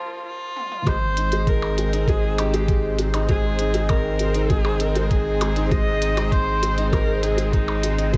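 A woody upright piano riff with tape echo and an expressive bowed viola melody, full of vibrato and portamento, open this luminous, hopeful piano and strings electronica excerpt, joined by a clicky drum-kit fill at 0.6 seconds before a thumpy, muffled kick, a deep round analog bass and a lush, detuned unison pad with chorus and phaser drop in together at 0.9 seconds, the bass and pad pumping beneath light digital reverb.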